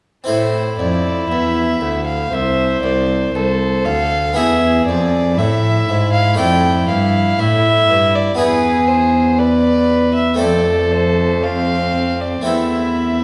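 A full, plucked Flemish-style harpsichord sounds first at 0.2 s, joined almost at once by two violins and a cello in an introspective, flowing baroque-style sonata movement, heard here as an excerpt from a longer piece. Up front, a single violin carries the melody with an airy, nasal gut-string bow, while a second violin with light vibrato adds a rich inner line and a dark, reedy cello anchors the bass beside the harpsichord's continuo. The period-style players sit in a wet recital hall, and the harmony moves from A minor through E, D minor and F before resting on A minor over E at 12.5 seconds.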